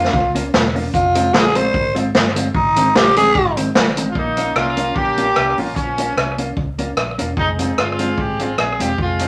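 Set in a wet club reverb, this energetic, driving ska piece in Bb dorian at 149 BPM with a light swing opens with a raspy, growling tenor saxophone solo up front until 3.5 s, over a dark, compressed electric guitar, a round, foam-muted fingered electric bass and a distant, roomy big-band drum kit with a punchy kick and slapback echo, before a clear horn section with light vibrato takes the melody from 4.1 s.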